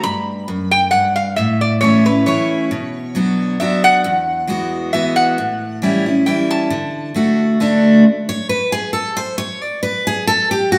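The lap resonator guitar carries the melody in a high register, its metallic, nasal slide tone played with fingerpicks and sitting up front. This is a driving, joyful bluegrass piece in D major at 135 BPM in 3/4, with a swung eighth-note feel, cut from a longer piece. Beneath it, a picked steel-string dreadnought guitar, also up front, supplies full-bodied, bright accompaniment across a broad range. The resonator's solo runs over a progression moving through G, A, B minor, E add 9 and A7 to D, and the resonator stops at 7.1 seconds. At 8.1 seconds the chords drop away and the acoustic guitar takes its own solo through to the end at 10.8 seconds. The band sounds as if it is playing live in one room, wrapped in the reverb of a wet stone space.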